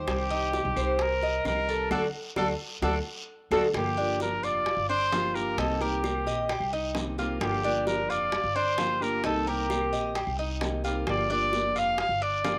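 An up-front, vibrato-laden trumpet with a vintage cassette-tape color leads this nostalgic, danceable fragment of Cuban son and guajira, carried by a full-bodied fingerpicked dreadnought guitar, metallic double-string tres arpeggios, woody pizzicato upright bass, round low-tuned bongos struck with hard hands, faint distant claves and a raspy guiro, with a band accent from 1.9 to 3.7 seconds and a drum fill at 3.5 seconds, all in light studio reverb.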